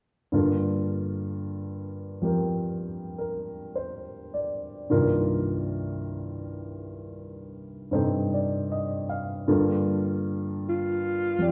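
A warm, natural baby grand piano sits up front and carries this intimate, wistful slow jazz swing in G minor at 52 BPM, moving from Gm7 to Cm7 before settling on Gm9 at 9.5 seconds. Near the close, at 10.7 seconds, a mellow alto saxophone steps forward as the solo voice on a single F4, with vibrato, a subtone, scooped notes and a smooth top. The band plays live together in a stone room whose reverb lends the performance a lingering, resonant air, and the passage is cut from a longer piece.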